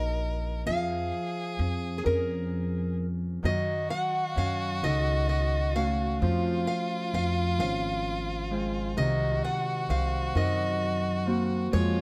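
An acoustic folk-pop ballad opens with a picked archtop guitar carrying the melody, its boxy tone sitting over a clear, focused violin line played with vibrato, an intimate grand piano with audible action noise, and a woody pizzicato upright bass placed up front. The tempo is a slow 43 beats per minute in a straight 6/8, and the mood feels nostalgic yet hopeful. Chords move through Ebm7, Bbm7/F, Gbm6, Dbmaj7/F and Cm7b5, giving the harmony a wistful, searching colour. At 3.4 seconds a bright Celtic harp enters with fingerpicked, ringing arpeggios beneath the guitar's melody. The sound is dry and close, with detailed microphones capturing each instrument's texture in this short section cut from a longer piece.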